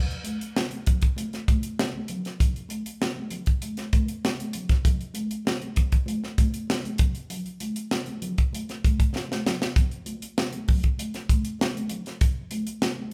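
Soul groove in a straight 4/4 with a bittersweet, cinematic mood, cut from a longer piece and carried by a tight funk drum kit of hi-hat, tight kick and high-tuned snare that sits dry and up front, with an airy, polished sound. Congas with a thick-skinned, high-tuned tone play underneath at a lower level, sounding like a band together in one room under light reverb. A short drum fill arrives at 9.1 seconds before the pattern carries on to the end.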